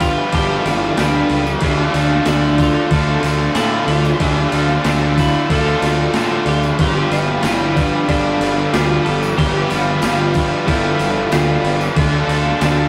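Hazy and dreamy, this shoegaze and dream pop excerpt moves at 93 BPM in G mixolydian, with a twangy, compressed twelve-string electric guitar melody riding over two bright, crunchy overdriven guitar riffs, one up front and one in the background, and a round, punchy fuzz bass. A gated 80s drum machine supplies a thumpy kick and gated-reverb snare with crash cymbal, joined by a very quiet jingly tambourine, a mellow string machine cello pad holding sustained chords, and a woody, shimmering fingerpicked twelve-string acoustic guitar playing arpeggios from 0.3 seconds. The harmony shifts between G7 and Dm7, and the whole has a rough rehearsal-room sound with tube saturation and moderate studio reverb.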